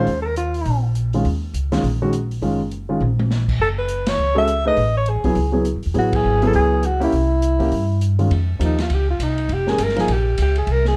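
A brisk 204 BPM swing in 4/4 drives this modal jazz fragment, cut from a longer piece, with a searching, spiritual mood. The upright bass plays pizzicato on gut strings, woody and thumpy and up front, while an open acoustic drum kit in a small room adds smooth, dark cymbals, a medium-tuned snare and a boomy kick across ride, hi-hat, crash and toms, with a drum fill at 3.0 seconds. A concert grand piano with a mellow tone and deep bass comps through Ebm9 and Gbm9 harmonies. The breathy alto saxophone sounds briefly at the start and returns at 3.6 seconds, using subtone, light vibrato and scooped notes, distant and roomy under plate reverb yet placed up front, with band accents punctuating the line. The harmony moves through C(b9) to F9sus4 as the saxophone opens a solo at 8.3 seconds, all within a warm, softly reverberant production.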